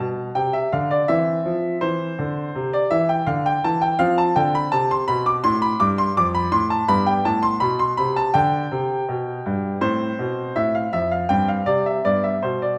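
A clear, up-front concert grand piano plays alone across this elegant, cheerful classical-period sonatina excerpt in C major at 82 BPM in a straight 4/4, its open tone, deep bass and long sustain moving through C, F, G and A minor harmonies before settling toward G at 12.0 seconds, all set in the moderate reverb of a recital hall.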